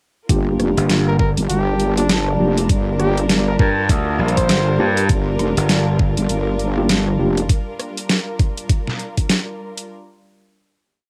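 Swaggering and playful, this glitch hop piece moves at 100 BPM in 4/4 with a 16th-note swing, sitting in G minor on a G minor seventh chord, and it is one continuous drop from 0.3 s to 9.9 s. An overdriven, knocking electronic kick sits up front alongside a dubstep kit of deep snare, bright closed hats and rim clicks playing a swung beat with edits, both carrying studio reverb and cassette tape colour. Two basses share the low end: a heavy, detuned wobble bass with chorus plays modulated phrases with changing wobble speed, while a punchy, overdriven slap bass adds chopped phrases answering it until 6.1 s. A jazz-style trumpet with vibrato, roughened by 12-bit sampler grit and analog delay, plays short answering phrases from 1.1 s to 5.0 s over mellow, syncopated electric piano stabs in close voicing that carry the same grit, delay, tape and sidechain pumping. Around them, an intimate sul tasto string section holds soft-attack chords with grit, pumping and tape, and a dark, wave-folded tape-like pad with chorus and pumping warbles in the background with slowly shifting chords, all captured as a home cassette recording with light reverb.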